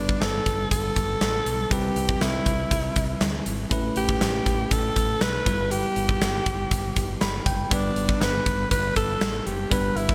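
A breathy, raspy alto saxophone with vibrato carries the melody up front in this glossy, nostalgic fragment of 1980s-style pop, backed by a bell-like tine electric piano that adds a short fill at 7.0 seconds, a round, punchy fretless bass and a huge arena drum kit with a pumping room sound and gated reverb, all wrapped in a lush hall and bright digital production as the chords move from G through Cmaj7, Aadd9 and Em/G back to G.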